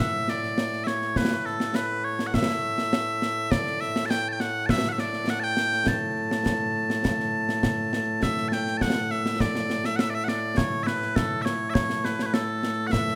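Scottish traditional pipe music in a straight 4/4, stirring and proud, led by loud, piercing bagpipes carrying a continuous solo melody up front with a slapback echo, joined at 0.3 seconds by close, dry concert snare and bass drums with dark cymbals, all in light reverb, cut from a longer piece.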